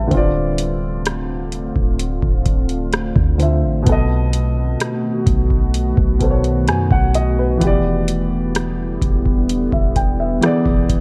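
Moody and longing, this contemporary R&B fragment sets a dark, up-front baby grand piano over a slow-attack, detuned sawtooth pad with chorus, built-in reverb and sidechain pumping, a boomy, sine-based 808-style bass, and a dry, booming analog drum machine whose deep kick, metallic hi-hats and rim clicks enter at 0.1 seconds, while the mix carries the warble and pitch drift of worn cassette tape under light reverb.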